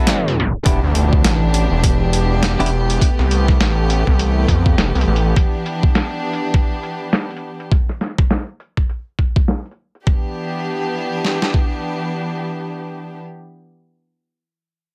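Funky and swaggering, this glitch hop excerpt in E minor rides a swung 102 BPM groove, opening with a tape stop as clean, fingered electric guitar stabs with tape echo flash briefly over sustained, softly bowed chamber strings that pump under sidechain and hold through to 13.2 seconds. Two pitched-down, sampler-style boom bap kits carry the beat, one with low-pass-filtered hi-hats and snare and the other with a thumpy kick and up-front snare that runs until 11.7 seconds, while a gritty, saturated sawtooth synth bass growls from 0.7 to 5.3 seconds and a very quiet electronic impact lands underneath. A filter sweep moves across the drums through the opening section as the chords pass from Em7 through Fmaj9#11 and G6 to a chordless stretch before Em7 returns, all in a dry, close-sounding mix.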